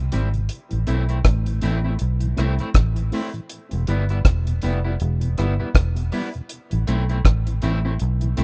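A dry, dark reggae drum kit with a tight kick, hi-hat and rim click sits up front in this serious, laid-back roots reggae fragment, joined by a round, punchy, foam-muted electric bass, a twangy, slightly broken-up guitar bathed in lush chorus and dub echo, and a soft, flute-like tonewheel organ with key click, chorus vibrato and dub echo tucked in the background, moving from A minor to E minor and back and heard as a rough home demo in a small room.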